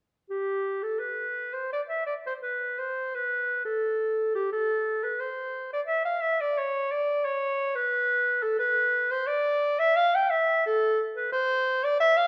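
Classical in style, this is a baroque-style fantasia for unaccompanied clarinet, serene and radiant in mood. It moves at 88 BPM in 3/4, though the rubato feel lets the pulse breathe freely. The solo clarinet plays from 0.3 to 12.3 seconds, moving between G4 and G5 with a warm tone that sits up front yet carries a distant, roomy quality. A moderate recital hall reverb, decaying over about 1.4 seconds, surrounds the line with a gentle halo. Tuned to A4 = 438 Hz, this brief passage is cut from a longer piece.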